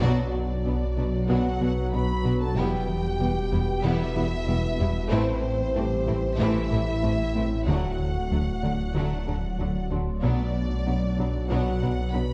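A thick, beating detuned saw bass sits up front in this brooding, tense hybrid orchestral and electronic film-score excerpt at 94 BPM in B phrygian, joined by a fat analog bass riff and bowed cellos and double basses, while a lush symphonic violin section carries the melody over a distant second violin line, woody violas, mellow French horns, warm trombones, a round pluck arpeggio, an ethereal airy pad entering at 0.3 seconds and a dark concert grand piano texture, the harmony moving through Bm, Em, Am and D as it opens with a full-band accent, all set in a moderate scoring-stage reverb.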